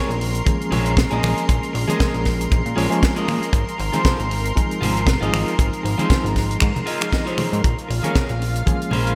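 A lush, detuned sawtooth pad sustains bright chords through a chorus and sidechain pumping as a picked electric guitar at the edge of break-up plays a riff with subtle chorus and delay, setting up a sleek, cosmic nu-disco groove at 117 BPM in Bb minor with a light 16th-note swing. A fat analog bass, thick with detuned sawtooth and square-wave tones and a quick filter pluck, sits up front with a tight funk drum kit of finger snaps, hi-hat and a high-tuned snare bathed in gated reverb. At 0.5 s a reedy electric piano joins with fast tremolo, delay and pumping through its built-in speakers, alongside a natural, tight kick drum that stands forward and very quiet, compressed congas played with soft hands. The harmony moves between Bbm7 and Ab6, and a clean electric guitar fill arrives at 6.6 s before the return to Bbm7. A moderate hall reverb and a bright 1980s-style digital production give this excerpt, cut from a longer piece, a polished sheen.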